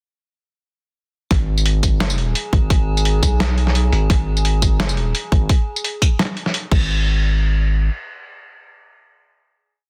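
Heavy and spacious, this short half-time drum and bass piece drops in at 1.3 seconds with a hard-clipped electronic kick and a gritty, pitched-down sampler-style kit of snare, closed hat, tambourine and crash, its snare softly clipped and tape-warm, over a deep, mellow 808-style bass playing chopped, long-decaying phrases. An eerie, metallic FM drone holds a single high note with chorus and its own reverb from 2.1 to 5.5 seconds, while the rest of the mix stays dry, dense and heavily limited. The drums stop at 6.8 seconds, leaving the bass to carry the final hit until 7.9 seconds.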